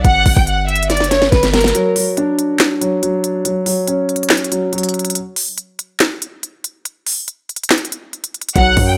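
This melancholic, eerie trap cut from a longer hip hop piece opens with a half-time groove at 141 BPM: a knocking kick, sharp snare, crisp hats and handclaps, tape-warm and up front, over a punchy, heavy 808 bass whose sine tone carries a noise layer and a fast attack before decaying. A lush, bowed violin section enters almost at once, its vibrato, portamento and soft attack giving an expressive, distant ensemble sound that is still up front and trailed by tape echo. After a drum fill from 0.9 seconds, the bass and violins drop away at 1.7 seconds and a dark, mellow baby grand piano takes over the accompaniment, intimate and up front, with audible action noise and long sustain over harmony that moves from D/F# back to F#. The piano stops partway through this break while the drums carry on, and the chords fall away to none. At 8.6 seconds the bass, violins and piano return together for a brief moment as the passage ends, all within light reverb and small room ambience.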